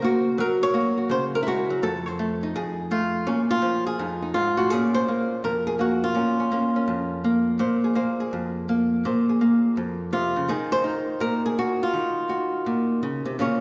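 A miked and amplified archtop guitar plays alone in this moody, swinging solo jazz fragment in Bb minor, taken from a longer piece and moving at a brisk 166 BPM with a 65% swing on the eighth notes. Its electric hollow-body tone is dark, clean and compressed, picked up front and ranging from F2 to Db5, with a wet, hall-like reverb trailing each phrase. The harmony opens on Gb7 and F7#9, then settles onto Bbm9 at 4.7 seconds before shifting to Ebmadd9 at 10.5 seconds.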